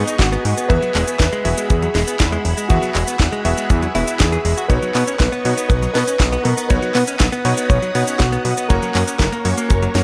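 Nostalgic and bittersweet, this italo disco excerpt moves at 120 BPM in a straight 4/4, cycling through G#m, Eadd9, Badd9 and F#. A dark, mellow concert grand piano carries the melody with a boxy, 12-bit sampler grit and delay, while a lush string machine holds sustained chords behind it, its slow attack and long release thickened by ensemble chorus. Deeper in the mix, a clean, direct-recorded electric guitar picks compressed arpeggios through delay, and a bright electric grand piano adds short, clangy stabs. The fat analog bass sits up front with a thick, detuned sawtooth tone, a filter sweep and a fast, decaying attack. An overdriven electronic house kit enters at 0.1 seconds with a cracking snare, bright hats, handclaps and cabasa in a small room, and a tight, dry acoustic kick anchors the beat from 0.2 seconds, while a barely audible downlifter passes in the opening 0.7 seconds.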